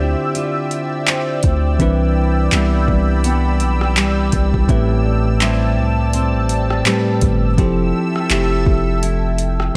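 A digital ambience surrounds this short, late-night contemporary R&B cut from a longer piece, its mood one of longing at 83 BPM in 4/4 with a gentle swing on the sixteenths, set in D dorian. A bell-like tine electric piano carries the accompaniment with a clean, direct brightness, while a fingerpicked nylon-string guitar plays arpeggios with a fresh-stringed classical depth, touched by digital delay. Above them, a lush unison pad of thick, detuned sawtooth and square waves holds sustained chords with a slow attack and long release, colored by chorus and phaser and pumping against a sidechain. Underneath, a long sustained 808-style bass sits up front with a deep, mellow sine tone that strikes quickly and then decays. From 0.3 seconds a smooth, produced drum kit joins with a soft kick, metallic hi-hats, rim clicks and handclaps, re-recorded in a small room and placed up front. The harmony drifts from Dm11 to Cmaj7, then Am7, and settles on Fmaj9 at 7.6 seconds.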